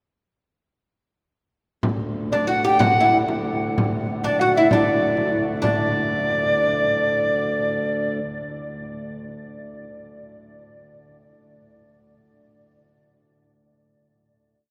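A complete medieval dance in D major and 6/8, rustic and ancient in mood, that speeds up from about 123 to 139 BPM, counted in dotted quarters, with the acceleration carrying on through the held final note that begins at 5.6 seconds. A reedy, breathing pedal harmonium holds a low D drone and a close frame drum keeps an evenly spread pattern. At 2.3 seconds a pure, chiffy alto recorder enters up front with an ornamented modal melody, together with a bright, fretless oud plucked with a plectrum on double strings, which plays the same line with its own ornaments and rings on alone until 8.9 seconds, all within a long, wet cathedral reverb.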